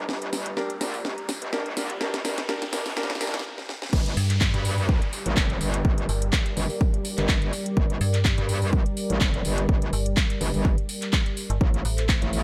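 A metallic, distorted wobble bass sits up front through this aggressive, gritty bass house cut in G minor, pumping against the sidechain at 125 BPM with a light 16th-note swing. The opening build-up pairs brilliant grand piano stabs carrying tape echo with a warbly, lo-fi tape-like pad, a sweeping detuned pad holding sustained chords, and a drum fill of cracking snare, handclaps and metallic hats as a background riser climbs until 3.4 seconds. After a brief stop, the drop lands at 3.9 seconds with a punchy, tape-warm kick and a dark, decaying FM bass joining the wobble bass down low. The resonant pad keeps evolving beneath the drums, and the chords move from G minor to A minor near the close. Light digital reverb frames the mix, and the recording is cut from a longer piece.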